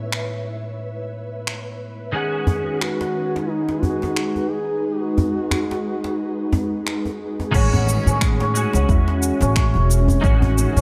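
Hypnotic and meditative, this organic downtempo excerpt at 89 BPM with a swung 16th feel opens on a bright, twangy twelve-string electric guitar and an ethereal sawtooth pad, both pumping under chorus, over a pure, background quartz singing bowl and an overdriven deep house kit of cabasa, crash and finger snaps; a mellow duduk with vibrato and scooped notes sings through delay from 2.1 s, a djembe with metal rattles soon joins, and at 7.5 s a shimmering hammered santur with delay, a woody pizzicato upright bass up front and a deep overdriven electronic kick arrive.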